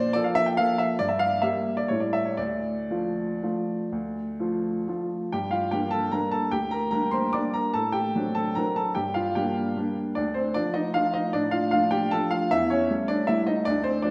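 A rubato waltz in three, this bittersweet, nostalgic classical fragment cut from a longer piece features a solo baby grand piano, warm and open with long sustain and placed up front, ranging from deep bass to high treble and shifting to a new harmonic area at 5.3 s, all bathed in the lush reverb of a recital hall.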